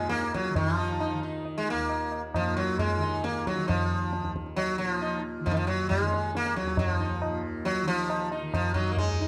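Solemn and introspective, this short excerpt of Hindustani classical music in raga darbari and a seven-beat cycle gradually speeds up as an up-front, buzzing sitar carries the melody over its sympathetic strings, a softly plucked tanpura sustains a shimmering drone beneath, and a close, high-tuned tabla rings out, all set in a dark production with a moderate recital-hall reverb.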